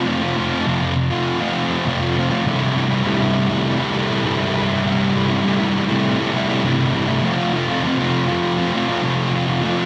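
A lush, wet hall reverb with a long 2.4-second tail gives this rock fragment a big arena sound, as though it were cut from a larger performance. At its center sits a single electric guitar, dark and thick with fuzz and distortion, double-tracked and placed up front, with a slapback echo trailing each picked note. The part spans a range from low C2 to F4, opening on an F chord before settling onto C6 at 2.5 s. From that point the feel drops into half time, which broadens the passage and heightens its anthemic, cathartic mood. The harmony returns to F at 7.2 s, carrying the solo guitar through to the close at 9.9 s.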